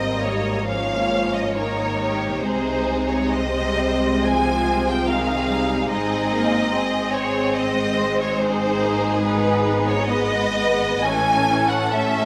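Lyrical and tender, this brief fragment of a slow romantic classical movement for string orchestra unfolds in Ab major at a rubato 60-74 BPM, with an up-front, focused violin section singing the melody over a clear, close second violin line, a smooth-topped viola accompaniment and a lush, even cello and double bass foundation, all bowed with vibrato inside a moderate scoring-stage reverb.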